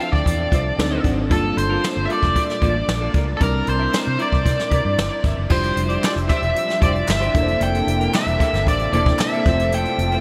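A nasal, overdriven lead guitar with a parked wah carries the melody up front over a worn, slightly out-of-tune tine electric piano, a compressed clean guitar riff in the background and a brushed drum kit with dark cymbals and a punchy kick. A foam-muted, round fingered bass joins them in this urban, breezy stretch of polished 1980s jazz-funk pop at 114 BPM, moving through jazzy chords like Dm9, Gm9 and C13. At 5.5 seconds a smooth, warbling sawtooth pad slides in behind, crisp handclaps barely surface from 6.0 seconds, and a huge ambient reverb soaks the mix in a dreamy haze.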